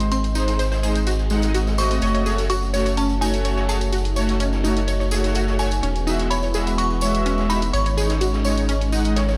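Progressive house at 126 BPM in a dreamy, emotional mood, where a round, deep analog bass sits up front beneath a warbling vintage pad, a crystalline FM bell melody treated with chorus, phaser and delay, bright detuned unison pluck arpeggios, smooth supersaw stabs, a background electronic hi-hat, a jingly tambourine and a gritty, rolled-off garage kit of hi-hat and snare, all moving through G#, F#m, Eadd9 and G#sus4 in a dark production with a lush hall reverb in this short cut from a longer piece.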